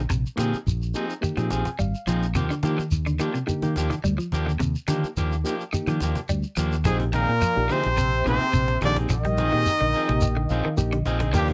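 Opening on a phaser-tinged, slightly broken-up guitar arpeggio over a round, dark fingered bass, this joyful, driving afrobeat excerpt at 107 BPM in Bb mixolydian adds a woody close cajon, grainy shekere, twangy guitar stabs and a reedy, lightly overdriven electric piano with fast tremolo that slips in fills, before a clear, punchy trumpet melody enters at 6.9 seconds backed by a very quiet bright trombone and a loose, brilliant trombone section in the background, all in a dry, close room.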